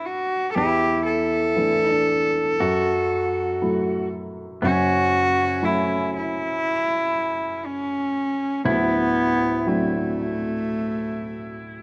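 A slow, straight 4/4 pulse at 60 BPM carries this melancholic, intimate acoustic folk-pop ballad in F# phrygian, cut from a longer piece. A rich cello takes the melody up front, a single bowed player with a nasal, reedy, gut-string tone, an airy bow and a boxy, period-style character. Beneath it, a pedal steel guitar plays a clean, compressed second line with fingerpicks and slide, its volume swells adding a gentle glow. A felt-muted upright piano supplies soft, mellow accompaniment from deep bass into the middle register, with short sustain and audible action noise. The harmony drifts from G6 through E7sus4 and F#m7 before settling on D7 at 8.7 seconds. Light reverb surrounds the parts, and the sound is coloured by worn, warbling old cassette tape with a warbly pitch drift.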